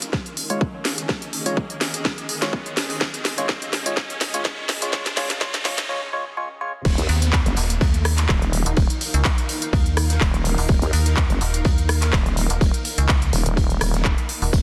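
Bouncy and swaggering, this bass house passage at 125 BPM in 4/4 carries a light 16th-note swing and opens mid-flow on a Db/Eb chord. The build-up pairs a punchy, up-front electronic kick and a layered house kit of cracking snare, crisp hats, handclaps, rim click, tambourine and crash with a drum fill, a background riser and downlifter, and a dark, hollow organ stab coloured by chorus, tape grit and delay. Underneath, a cloudy granular pad drifts with slow attack, long release, its own reverb and a sidechain pump, a mellow, detuned blur. After a short break at 5.9 seconds, the drop lands at 6.9 seconds on Ebsus2, where a nasal, resonant vowel-sweep wobble bass with chorus and tube saturation stacks with a metallic, decaying FM bass, both pumping against the kick. An oversized, low-tuned acoustic kit adds a fat snare and filtered hats from a bright stone room in the background, all sealed in a dense, heavily limited modern master with light digital ambience.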